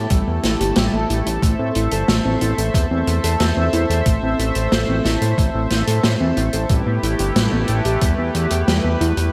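A fat, detuned analog bass sits up front in this nocturnal, cinematic synthwave excerpt, its sawtooth tone thick and evolving as it holds the low register from G1 to A2. Above it, a chorused pulse-width pad sustains shimmering, retro chords with sidechain pumping, while a soft, round pluck traces arpeggios through chorus and digital delay. At a straight 91 BPM in 4/4 and A minor, the harmony moves from Em to Am at 1.4 seconds and returns to Em at 6.7 seconds. A thumpy, sampler-style electronic kick drives the groove until 8.1 seconds, joined by a vintage kit whose hi-hat and medium-tuned snare carry gated reverb and a rolled-off top. A moderate plate reverb and bright 1980s-style digital production give the short cut from a longer piece its glossy, after-dark sheen.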